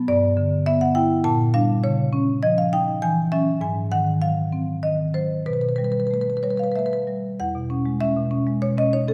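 A solo marimba played with medium mallets carries this short excerpt from a longer contemporary classical piece, its rosewood bars giving a woody, warm tone that sits up front in the mix. The mood is hypnotic and flowing, moving in 3/4 at roughly 93-103 BPM with a supple rubato feel. The marimba spans a broad register, from E2 in the depths up to A5. Its harmony drifts through rich, colourful chords such as sixth, added-ninth and suspended shapes before a new section begins at 7.4 s and returns to E69. The instrument is heard from further back in a recital hall, whose lush reverb lingers for about 1.6 seconds and bathes the bars in a soft halo, until the excerpt breaks off at 9.1 s.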